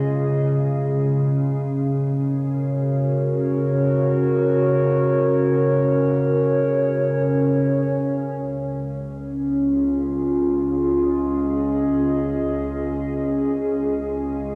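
Ambient music in free time and D-flat major, this peaceful, cut-from-a-longer-piece passage is led by a warbling, lo-fi pad of detuned square and triangle tones with ring modulation, slow attacks and long releases, holding up-front chords through chorus and built-in reverb, while a calm, organ-like sine drone hums in the background with ensemble chorus. At 8.4 seconds a bowed double bass section with gut-string tone, light vibrato and a reedy edge joins on a low D-flat as the drone fades in, the harmony returning to Dbadd9 after earlier moving from Dbadd9 to Gb/Db. The whole sits in moderate spring reverb with the character of a home cassette recording.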